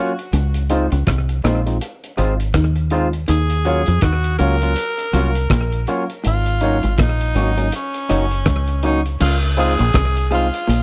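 A deep, round dub bass sits up front in this sweet, smooth lovers rock reggae excerpt in Db major, moving at 81 BPM with a swung 16th feel over chords that pass from Dbmaj9 through Ebm9 and Ab7sus4 to Dbmaj7. Around it, a barky tine electric piano comps cleanly, one twangy, slightly broken-up guitar plays stabs while a darker guitar riffs low in the background, and a muffled, cloth-damped drum kit with a tight kick, dark cymbals and rim clicks carries a slapback echo. At 3.3 seconds a raspy, punchy tenor saxophone enters with the solo melody, its light vibrato trailing a tape echo, all captured in a dry, close 1970s-style studio sound.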